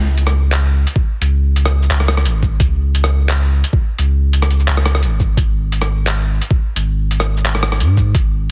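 Spacious and cinematic in mood, this short cut from a longer piece is half-time drum and bass in 4/4, with a slightly flat tuning reference of A4 = 438 Hz. A saturated sub bass opens at 0.0 seconds, deep and thick with a triangle-like tone, a fast attack and sustained notes that sit up front. At 0.2 seconds a boom bap sampler-style drum kit joins with handclaps, hi-hat, rim click and shaker, its gritty sound re-recorded in a small room and held back at a lower level. An electronic kick drum arrives at 1.0 seconds, thumpy and placed prominently in the mix, and both drum parts carry overdrive. The dry, heavily compressed sound recalls a radio broadcast, with little reverb around the parts.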